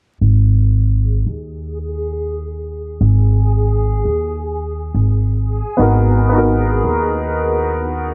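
A small room ambience with vinyl crackle and a low-pass filter gives this brief trip hop excerpt a dusty, muffled sound, and a filter sweep runs through its whole length. The mood is brooding and melancholic, set at 86 BPM in 4/4 with a 56% swing on the sixteenths, in G# minor over a single G#m7 chord. An upright bass enters at 0.2 seconds, plucked and up front, its woody, dark tone sitting low between G#1 and D#2. From 1.1 seconds a backwards swelling texture hovers on G#4, reversed, granular and dreamy, with a soft attack, a bright edge, a detuned quality and its own reverb. At 5.8 seconds a clear upright piano joins as accompaniment between B3 and A#4, present and slightly out of tune, its long sustain colored by harmonic tremolo and tape echo.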